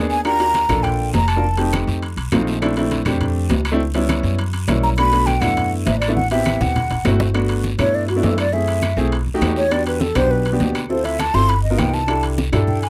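Lively and danceable, this Afro-Cuban jazz excerpt sets a polished, present grand piano and a growly, woody pizzicato upright bass up front, while low-tuned, thick-skinned background congas, close, dry guiro rasp, ringing, vintage-sounding metal timbales and background claves fill out the percussion. A breathy, hollow concert flute with a soft attack states a brief phrase at 0.1 seconds, returns at 4.8 seconds, and after a drum fill takes a solo from 7.3 seconds over lush extended jazz harmony. Light reverb places the whole ensemble in a shared space.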